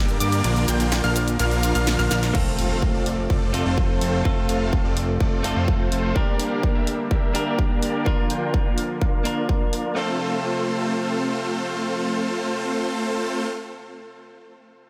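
Euphoric and uplifting, this festival progressive house excerpt in F major at 126 BPM opens on a drop where a punchy, detuned unison pluck arpeggiates high above a fat, saturated analog bass, huge bright supersaw chords with tape echo and a filter sweep from 2.3 s, and a warbling vintage pad with chorus, all pumping to the sidechain, joined almost at once by a big-room kit with punchy snare, cymbals and cabasa; then an up-front layered electronic kick, a very quiet electronic impact and a compressed, clean, direct-recorded electric guitar with spring reverb and tape echo drive it on through Gm and Bb, the bass stopping at 6.1 s and the drums by 9.8 s.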